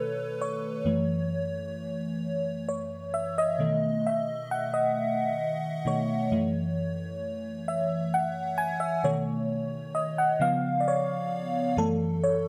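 A lone FM electric piano, layered with a soft pad, carries this late-night R&B piece from start to finish, playing solo and sitting up front in the mix. Its tone is lush and mellow, with a detuned shimmer, a fast attack that decays, and a noise layer. Chorus and phaser give it a dreamy, sultry glow. The piece moves in an unhurried 6/8 with a straight feel, circling between B7 and F#m7 before a C#7 at 10.4 seconds leads back to F#m7 at 11.8 seconds. The piano ranges from F#2 up to G#5, and light reverb adds a hint of space around it in this short section cut from a longer piece.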